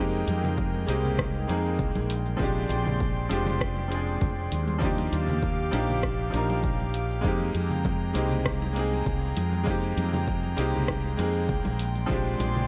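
A bright grand piano with delay, an airy, breathy pad shimmering with chorus and a dark, round fretless electric bass open this relaxed 99 BPM sunset chillout excerpt in F dorian, with a smooth R&B kit of warm hi-hat, rim click and shaker and quietly ringing congas joining at 0.3 seconds and a punchy layered electronic kick at 0.6 seconds, all moving through Fm11, Bb13 and Ebmaj9 chords in a light reverb.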